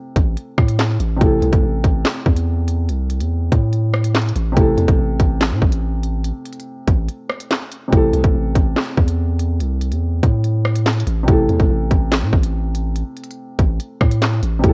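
Tense and cold, this drill-style hip hop fragment moves at 143 BPM in 4/4 with a half-time feel and stays on A minor throughout. A dark baby grand piano opens the cut as accompaniment between C3 and A4. Its low-passed tone is mellow and boxy, and audible action noise and short sustain give it an intimate, close character. At 0.2 seconds the drill drum kit and a long sustained 808-style bass arrive together, both placed up front: the electronic kit pairs a hard-clipped kick and sharp snare with crisp hi-hats, handclaps and rim clicks, re-recorded in a small room, while the deep sine bass hits with a fast attack and decays across A1 to A2. A brief break at 7.1 seconds interrupts the groove, and the recording is bathed in digital ambience with a worn cassette-tape quality and warbly pitch drift.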